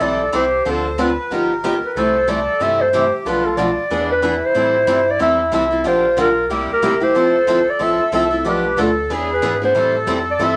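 A bright swing at a brisk clip drives this short cut from a longer jazz manouche piece, its eighth notes lilting gently in four, with a swinging, charming mood. Up front, a mellow clarinet carries the melody in a smooth, subtoned jazz voice, shading its notes with light vibrato and scooped attacks. An airy, reedy accordion with slow beating sits beneath it as a second line. Two picked steel-string acoustic guitars supply the accompaniment: one bright and concert-sized in the foreground, the other a boxy parlour guitar, plugged in and tucked into the background. A deep, clean sine sub bass underpins everything with dark, sustained notes and a fast attack. The harmony moves through rich jazz changes before turning toward the minor at 4.6 seconds, and the whole ensemble sits in a moderate studio reverb.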